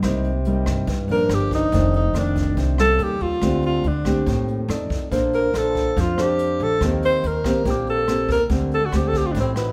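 This short passage, cut from a longer piece, is heard in a church or concert hall, with a moderate recital-hall reverb whose decay lasts about 1.2 seconds. It is a melancholic, intimate bossa nova in 4/4 at 142 BPM with a straight feel. A dark, thumb-plucked classical nylon-string guitar sits up front, carrying the accompaniment. An acoustic upright bass with steel strings plays pizzicato underneath, its tone woody and warm. A jazz brush drum kit, recorded in a studio room, supplies hi-hat, rim click and a boomy kick. At 1.1 seconds a breathy alto saxophone enters up front and takes the solo, playing with vibrato and subtone over changes such as Cm7, F13, Bbmaj9 and D7sus4.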